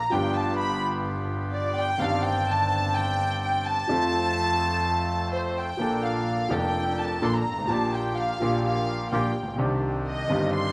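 This tango excerpt moves at 127 BPM in 4/4 with a rubato feel, set in Bb major, and its mood is sultry and tense. A bowed violin section carries a second line high in its register, played sul tasto with a soft attack and a pure, floating top that sits up front, taking solo moments across both passes of the same section, which restarts at 5.8 seconds. A smooth, vintage-toned grand piano, also up front, accompanies across a broad range from deep bass notes to the middle register. A single player on bowed double bass adds a gut-string, period-style tone with light vibrato, while a dark, reedy bandoneon enters at 0.1 seconds with stabs. The harmony moves from G7 through Cmadd9/G and F, then to Bbmaj7, Gm7/Bb and Cmadd9, all bathed in a moderate plate reverb with a 3.3-second tail.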